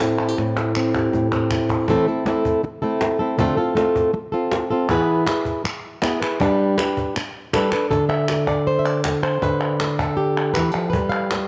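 A fingerpicked flamenco guitar, fresh-stringed and up front with audible finger squeak, opens this fiery, mournful flamenco excerpt in A minor at 159 BPM, over a woody, band-limited cajon played with soft hands and crisp palmas hand claps, with a cajon fill from 0.4 seconds. The palmas drop out at 1.9 seconds and return at 4.9 seconds as the guitar carries the melody through Am, Dm7, E and G before settling on D5 and G. A moderate echo-chamber reverb gives the recording a roomy studio sheen, and the cajon's faint snares add a vintage rattle.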